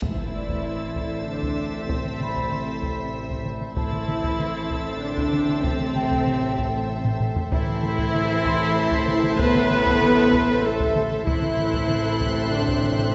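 A cinematic suspense cue in A minor, eerie and ominous, moving at 96 BPM in 3/4, cut from a longer piece. It opens on a huge, dark reverse cymbal and impact under a bowed sul tasto string bed of violin sections, with a clear melody on E5, a woody second line, and a high, floating texture, over intimate violas, background cellos and a pure double bass on A1. Mellow French horns and trombones hold sustained chords, while hard-stick taiko drums play within a wet scoring-stage reverb, a metallic, ringing vibraphone enters at 0.4 s, and a very quiet timpani fill arrives at 11.3 s.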